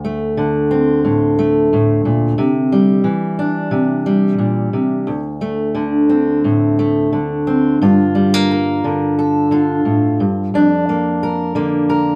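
A fingerpicked steel-string acoustic guitar, dark and up front, opens this melancholic, intimate folk excerpt in D minor at 89 BPM in a straight 4/4, moving from D5 through Cadd9 and back before shifting at 7.8 seconds to Gm7 and Bb/F, all within a moderate small-room reverb that keeps the solo playing close until it is cut off at 12.2 seconds.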